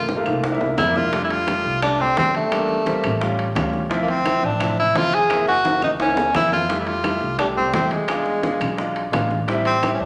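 A clear tenor saxophone with light vibrato carries the solo melody up front in this lively, sophisticated Afro-Cuban jazz excerpt in F major at a brisk 172 BPM in a straight 4/4. A concert grand piano with deep bass accompanies through rich chords such as F69, Gb7#11 and Fmaj9, while a dark, woody pizzicato upright bass anchors the low end. In the background sit round, low-tuned bongos, thick-skinned congas, ringing metal-shell timbales and saturated, woody claves, with drum fills at 0.0 and 5.6 seconds and a large, wet studio reverb around the ensemble.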